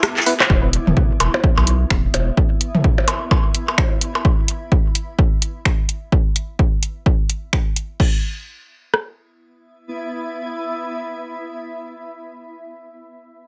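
A punchy analog drum machine drives this hypnotic, quirky minimal techno excerpt at 128 BPM in 4/4, its up-front kick and rim click carrying a tape-warm, small-room grit over a 16th-note swing. A second analog drum machine layers crash cymbal, finger snaps, handclaps, hi-hat and shaker until 8.1 s. An overdriven minimal click kit adds percussion blips, rim clicks and toms with a large-room sheen through the opening seconds. After a short break and drum fill, a deep, thick, saturated sub bass lands at 0.5 s on an E5 chord, pumping against the sidechain before dropping out soon after. Underneath, a cloudy granular pad drifts in a blurred, evolving haze with its own reverb and sidechain pumping, and it fades out by 6.1 s, all within a light overall reverb.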